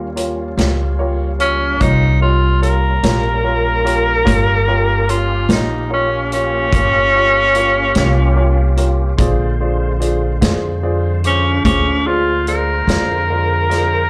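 A slow blues rolls along in 12/8 at 49 BPM counted in dotted quarters, its gritty, swaggering mood heard as a live gig through a club's PA with light room reverb, cut from a longer piece. The upright bass sits up front with a woody, growly pizzicato tone, while a vintage drum kit of hi-hat, punchy kick and medium-tuned snare enters at 0.2 seconds, saturated and rolled off at the top. A dark, mellow baby grand piano with short sustain plays the accompaniment, treated with plate reverb and slapback echo. Behind it, a reedy tonewheel organ holds sustained chords through a slow rotary speaker and chorus vibrato, its key click audible in the background. At 1.4 seconds a breathy tenor saxophone takes the solo melody up front with a soft attack and vibrato, carrying the same plate reverb and slapback echo as the piano. The harmony rests on a rootless Eb7 before moving to Bb7 at 9.2 seconds.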